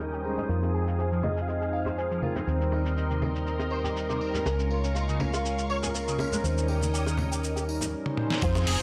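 Nu-disco at 121 BPM in 4/4 with a straight feel, this sleek, cosmic excerpt is cut from a longer piece and moves through Fm7, Cm7/Eb, Db6 and Eb7. A smooth, warbling analog pad with chorus and slapback echo sits up front, while a lush string machine holds sustained chords with ensemble chorus and sidechain pumping until 7.9 s. Underneath, a dark, round hollow-body electric bass with tube saturation drives the low end, and a twangy, scooped electric guitar picks a clean riff through an envelope filter and a filter sweep in the background. A soft octave-layered synth lead carries the melody from 0.2 s, its tone colored by phaser, vibrato, cassette tape and tape echo. A gritty sampler-style kit with a fat snare, plus ringing tambourine, congas and bongos, keeps the groove in a small room, and a drum fill at 8.1 s leads to a thumpy electronic kick at 8.4 s.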